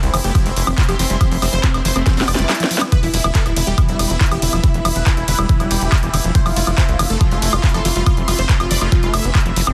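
Psychedelic trance at 140 BPM in a straight 4/4, this hypnotic, driving passage is cut from a longer piece and moves through F5, E5 and back to F5 power chords. An overdriven electronic kick with a knocking tone sits up front from 0.3 seconds. Beside it, a layered kit brings a cracking snare, bright hats, handclaps, ride and woodblock, with a drum fill starting around 2.1 seconds and a very quiet electronic swell entering around 2.4 seconds, both ending at 2.9 seconds. A tight, punchy sequencer bass of sawtooth and square waves drives the low end. A squelchy, gritty acid bass with distortion, digital delay and sidechain pumping churns in the background. On top, an airy, detuned supersaw stab carries the melody through phaser and delay. A bubbling, resonant stepped-filter pad holds sustained chords with chorus and reverb, and a very quiet, lush bowed string section adds vibrato. The mix is dry, dense and heavily limited in a modern style.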